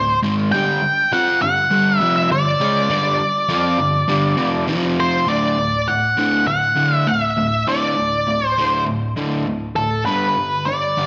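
An octave-fuzz lead guitar carries the melody up front, its dark, distorted tone sitting high in the mix and doubled by a slapback echo as it moves through a picked line. Beneath it, a crunchy overdriven guitar plays the riff, bright and double-tracked with its own slapback echo, spanning a low-to-middle register. This is swaggering, confident rock in a straight 4/4, cut from a longer piece, with both guitars playing throughout its 11.1 seconds. A recital hall reverb drenches the sound, lending it a big arena feel. The harmony shifts around 5.3 seconds as a new section begins, settling on D before moving to G near 10.1 seconds.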